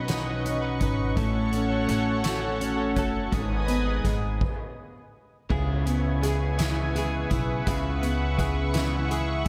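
A full-bodied, double-tracked fingerpicked acoustic guitar, a thick, warbling detuned pad with chorus, a bright, compressed direct electric guitar picking arpeggios through analog chorus, a woody pizzicato upright bass and a soft-mallet drum kit with a boomy kick and dark cymbals open this dramatic, aching six-eight pop ballad fragment in C# minor at 56 BPM together, before a stop falls from 4.4 to 5.5 seconds and the music settles onto C#m7 in a small, lightly reverberant room.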